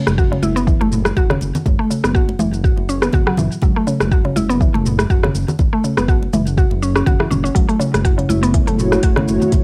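A swung afro house groove at 122 BPM in 4/4, built on a deep, up-front electronic kick and a tape-softened afro-pop kit of smooth hi-hat, rim click, shaker and toms, with hard-handed congas sitting close and dry in the background. Over a dark, rumbling detuned saw bass that pumps with sidechain compression on an Aadd9/F# chord, a woody, round mallet-like synth pluck spins hypnotic arpeggios through chorus, analog delay and cassette saturation. At 7.9 seconds a moody, evolving analog pad joins with sustained chords, deepening the earthy, home-recorded cassette feel of this short cut from a longer piece.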